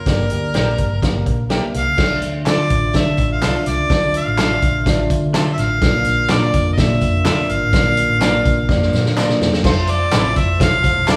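Joyful and uplifting, this uptempo 1960s-style soul clip, cut from a longer piece, moves in a straight 4/4 with the energy of a band playing live in one room. A clear, punchy harmonica carries the melody up front with a light vibrato, over a concert grand piano with deep bass, a boxy tone and long sustain, and a dark, round, foam-muted picked bass. The natural-sounding drum kit sits forward with a punchy kick, a medium-tuned snare and dark cymbals, while a slightly broken-up, twangy electric guitar adds stabs in the background. At 2.0 seconds a fat, lightly overdriven tonewheel organ joins with sustained chords through a slow rotary speaker, chorus vibrato and audible key click, and tambourine with group handclaps arrives close behind. After a drum fill at 8.7 seconds, a metallic, bell-like glockenspiel with a vintage, band-limited ring enters at 9.6 seconds to play a second line as the harmony settles onto a major seventh chord, all bathed in a moderate large-studio reverb.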